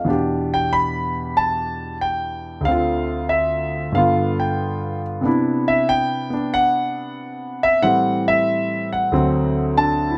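A solo concert grand piano carries this short, relaxed jazz fragment, cut from a longer piece, with a swinging lilt on the eighth notes in a steady four. The piano sits up front with an intimate, natural tone, a deep bass reaching down to D2, and the audible noise of its action close at hand. Its playing spans up to B5 over a ii–V style progression, moving from Em7 through Dm7 and G7 to a Cmaj9 at 5.2 seconds, then on to Am7 and D7. Light reverb gives the sound a touch of space while keeping it close and personal. The whole passage lasts about 10.2 seconds and feels easygoing and unhurried.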